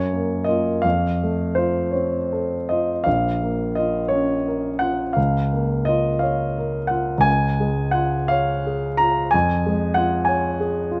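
Close, detailed microphones and light reverb place a warm grand piano up front in this tender, nostalgic excerpt from a romantic classical nocturne for solo piano in B-flat minor. The music moves in a rubato 12/8 at roughly 53-64 dotted-quarter beats per minute, spanning Bb1 to Bb5 across its 11 seconds. The harmony drifts from Gbmaj7 and F to Bbm, then through Bbm/Db and Db, settling on Db/F.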